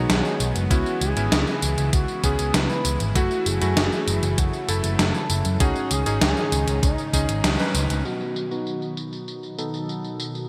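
A straight 4/4 pulse at 98 BPM drives this nostalgic, nocturnal synthwave fragment, where an up-front, overdriven 80s drum machine with gated-reverb snare, hi-hat and tambourine is joined at 0.7 s by a thumpy electronic kick that drops out at 7.4 s, beneath an amped picked electric bass, a mellow, detuned supersaw pumping in the background, clangy, short-sustain electric grand piano stabs and a dark, expressive sawtooth lead with chorus and vibrato, set in a lush hall with bright 1980s digital polish as filter sweeps move across the drums, supersaw and piano from 8.1 s.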